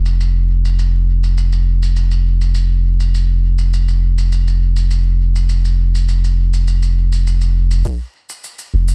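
A straight 4/4 pulse at 102 BPM carries this spacious, peaceful ambient dub passage, cut from a longer piece. A deep, round analog bass sits up front from the start, holding a dark, sustained sine-like tone around F1 with a fast attack and a filter sweep, while a faint acoustic shaker, set in a big room, drifts behind it through low-pass filtering and dub echo. At 7.9 seconds a muffled, pitched-down, thumpy electronic kick lands once with tape-warm compression, all over a dry mix dusted with vinyl crackle.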